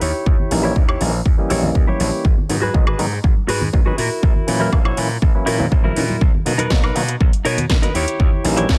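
A straight groove drives this feel-good, funky slice of filtered disco house, where a punchy, up-front electronic kick joins at 0.3 s over a tape-warm house kit of cracking snare, metallic hi-hats and woodblock, with soft-handed tambourine and congas tucked in the background. A bright, glassy slap bass and a picked, compressed clean electric guitar riff pump against the sidechain under a low-pass filter from the start, and a stringy, percussive clav with phaser enters at 0.5 s. A filter sweep runs through the whole excerpt as the chords move from D#7b9 through G#m7, F#7/A# and Bmaj7 back to D#7b9, all set in a digital ambience.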